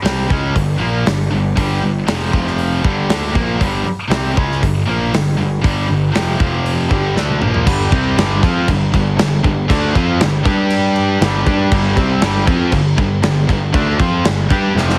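A straight, driving 4/4 pulse from a big acoustic rock kit carries this menacing, aggressive hard rock section, cut from a longer piece. The drums sit up front with a punchy kick, a medium-tuned snare, crash, hi-hat and toms, all rolled off at the top and mid-forward in a big room. Two picked, distorted electric guitars hammer out the riff together from the start: one scooped and high-gain, the other tight and bright. Beneath them, a fuzz-soaked picked electric bass, heard both direct and through an amp, adds an overdriven, punchy low end. The harmony circles around G minor with brief turns to an F power chord. After a drum fill at 7.2 seconds, the second half opens at 7.7 seconds on a G power chord, and a double-tracked tight guitar joins in the background. The whole mix has light reverb and a heavily compressed radio sound.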